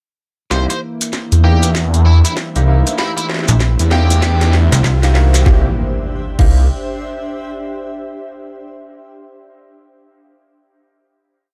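This funky, playful glitch hop piece opens at 0.5 s with a swirling, thick detuned saw bass, phased and tube-saturated, sitting up front in chopped phrases over a knocking electronic kick and a swung, edited drum-and-bass kit with a cracking snare, bright hats and crash, both re-recorded in a small room. Around them, at a swung 97 BPM in 4/4 over a C7#9 chord, a clear, worn concert grand piano plays syncopated rootless chord stabs with dub echo and sidechain pumping. A biting, overdriven electric guitar adds short answering phrases with dub echo, while a smooth, chorused analog pad holds sustained chords in the background and grainy, vintage maracas shake hand-played sixteenths. A cloudy, evolving granular pad drifts in with slowly shifting chords, a very quiet riser and impact mark the transitions, and from 3.5 s a snappy, metallic FM slap bass answers the other bass in chopped phrases. 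The whole stretch works as a build with a drum fill until 5.5 s, when the piece settles onto a final chord in a dry mix.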